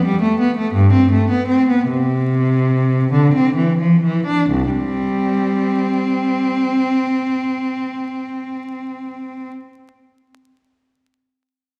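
Heard from further back in a recital hall with a long, wet reverb tail and a layer of vinyl crackle, this short excerpt, cut from a longer piece, captures a baroque-style suite movement for unaccompanied cello in C major. A single bowed cello carries the whole passage on its own from 0.0 to 9.5 seconds, its rich, vibrato-laden tone sitting close and up front against the distant room. The movement moves in a lilting 6/8 at roughly 43-57 dotted-quarter beats per minute, played with a free, rubato feel that lends it a radiant, dance-like character. The line ranges from C2 up to D4, with a rootless Fadd9 opening into G and then C, and the opening phrase slows down through its first 4.5 seconds. From 4.5 seconds a new section settles onto an open C5 sonority, the cello's smooth, even bowing continuing through to 9.5 seconds.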